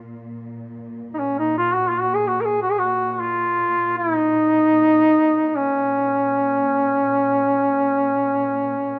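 A rough home demo with light reverb and a small-room ambience frames this short cut from a longer Caucasian folk lament in B-flat minor, unfolding in free time with a solemn, longing mood. A warm duduk carries the solo melody up front, its vibrato and scooped notes sounding distant and roomy in a folk style across the full 9.0 seconds. Far beneath it, a dark, lush symphonic string section holds a bowed drone on B-flat with expressive vibrato and a smooth top.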